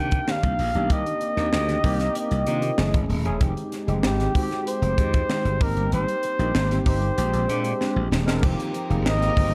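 Nocturnal and slick, this short cut from a longer piece of polished 1980s jazz-funk pop moves at 96 BPM in a straight 4/4. Up front, a breathy flugelhorn carries the melody with whispered, scooped notes and an intimate vibrato, while a growly, bright slap bass and a crisp fusion drum kit with a punchy kick, high-tuned snare and dark cymbals drive the groove. A barky tine electric piano through a combo amp supplies the chords with analog chorus, and a mellow, fingered electric guitar plays a riff in the background with chorus of its own. The harmony glides from Cm9 through F#m9, Fm9, Abmaj7 and Bb13, and a drum fill at 7.8 seconds leads into a new section at 8.4 seconds. There a lush, woody string section enters with sustained chords over F7sus4, all set in a small room with a dark, warm production.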